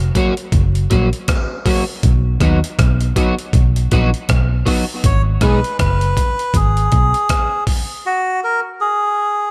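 Hazy and spacious, this dub reggae excerpt opens on a break: a gritty, compressed sampler-style drum kit with a thumpy kick, hi-hat and rim click sits up front beside a dark, round, foam-muted fingered electric bass. A bright, twangy electric guitar at the edge of break-up adds accompaniment through analog chorus and tape echo, and the groove carries a swung sixteenth-note feel inside a digital ambience. At 5.1 seconds a reedy, breathy melodica takes the melody up front, trailed by its own tape echo, and it plays alone once the drums stop at 7.9 seconds.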